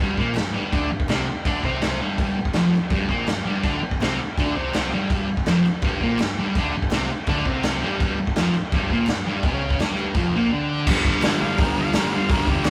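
A straight 4/4 pulse at 166 BPM drives this raw, swaggering garage rock excerpt, with an up-front drum kit of punchy kick, snare, hi-hat and crash in a bright stone room, joined by crisp, distant group handclaps and a growling, overdriven picked bass sitting very low in the mix. A double-tracked, compressed fuzz guitar riff rides over a G5 chord, and after a break from 10.5 to 10.9 seconds, a mellow, vintage overdriven harmonica enters at 11.4 seconds with vibrato and scooped notes. The rough rehearsal-room sound carries saturation and a moderate reverb, and the clip is cut from a longer piece.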